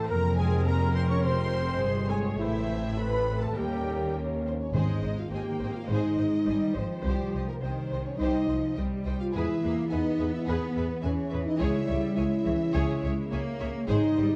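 A dark, roomy recital-hall sound frames this adventurous, swashbuckling film-score cue, cut from a longer piece, where a lush, close violin section carries the melody over a background violin line, a vibrato-rich viola section and mellow French horn chords. A ringing concert harp plays arpeggios while an intense cello section and a distant double bass section hold the bass, and until about 4.1 s an airy flute section, a very quiet solo clarinet and a light-vibrato solo trumpet with stabs add color. Timpani with calf heads enter at 4.7 s to mark the move into the second section.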